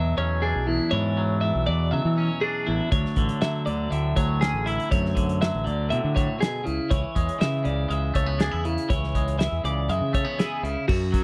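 A bright, compressed twelve-string electric guitar picks arpeggios over a clean, twangy electric guitar with spring reverb in this playful math rock and midwest emo piece at 120 BPM in D lydian, moving from Dmaj9#11 to a rootless Amaj9/C# at 6.7 seconds. A growling, overdriven fingered bass sits up front, and a loose acoustic indie kit with a fat snare, tight kick and rolled-off top enters at 2.9 seconds. The dry, close 1970s-style studio sound keeps every part near.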